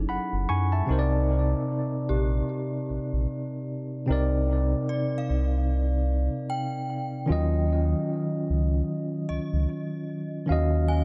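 A deep, sine-like sub bass with its octave sits up front beneath a clean tine electric piano touched with analog delay and a ringing, inharmonic FM synth chime shimmering through ensemble chorus and phaser, in this longing, late-night contemporary R&B excerpt at 75 BPM with a lightly swung sixteenth feel, moving through F#m9, Cm9 and Ebm9 in an echo-heavy digital ambience.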